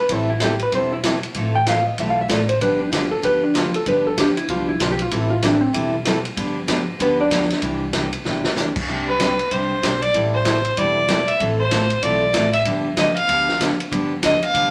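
A briskly swinging western swing groove at 191 BPM in C major drives this down-home country excerpt, where a dark, clean hollow-body jazz guitar solos up front until 7.6 seconds over picked steel-string acoustic guitar with audible finger squeak, woody pizzicato upright bass and a punchy big-band drum kit whose short fill at 8.3 seconds hands off to a biting, intense bowed fiddle solo with light vibrato from 9.1 seconds, all set in a small, reverberant room.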